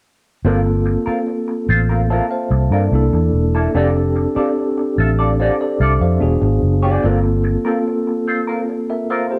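A straight, unhurried 4/4 pulse at 73 BPM carries this smooth, silky soul passage in G dorian, cut from a longer piece. The harmony moves through Gm11, C13, F6 and E9 before returning to Gm11 as a new section begins at 7.0 seconds. A mellow, clean tine electric piano sits up front through its built-in speakers, beside a dark, round, foam-muted fingered electric bass that stops at 7.6 seconds, while a bright, twangy, slightly broken-up electric guitar picks a riff with wah through a small old amp, all set in light reverb and digital ambience.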